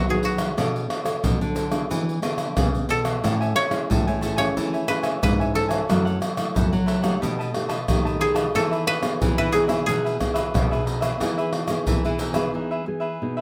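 A dry, woody koto played with fingerpicks carries the melody through this joyful, festive excerpt of samba and choro in E major, moving at 90 BPM in a straight 4/4 over chords such as Amaj7, Baug7 and Emaj7. Beneath it, a fingerpicked classical nylon-string guitar supplies warm accompaniment, a second nylon-string guitar, thumb-plucked, holds the bass, and egg shaker, pandeiro, tamborim and a deep surdo fill out the percussion with a large-room sound. A crisp, picked cavaquinho joins at 3.2 seconds, and a short break arrives at 12.5 seconds, all captured with close, detailed microphones and light reverb.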